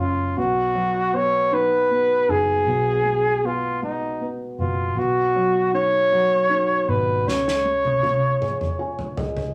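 A rough rehearsal-room recording with moderate studio ambience frames this romantic, heartfelt pop ballad in six-eight, moving slowly at 52 beats per minute in a straight feel. A clear, up-front flugelhorn carries the solo melody in a pop style with vibrato, sitting between D#4 and C#5. A felt-muted upright piano supplies soft, mellow accompaniment, its thick felt and audible action noise giving it an intimate, dusky tone, while a vintage muted fingered electric bass adds a round, punchy, amped low end. The harmony moves through B, G#m/B and back to B before landing on C#. At 7.3 seconds an unplugged acoustic drum kit, played up front with bundle sticks, enters with a fill on snare and toms, and at 8.4 seconds the piano adds a fill of its own as this cut from a longer piece comes to a close.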